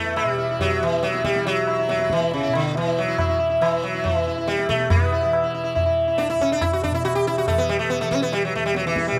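Closely miked and finely detailed under a light reverb, this short excerpt from a longer Hindustani classical performance sets a meditative, longing mood in raga Kafi on E. A bright, buzzing sitar carries the melody up front, its plectrum-plucked notes ranging from C#3 to G4 and ringing with the shimmer of its sympathetic strings. Beneath it, a softly plucked tanpura holds a warm, buzzing drone between E2 and E3, sitting well back in the balance. The low-tuned tabla enters at 0.2 seconds with short, ringing strokes that carry a small-room acoustic. The music moves at 140 BPM in a straight 4/4 across its 9.2 seconds.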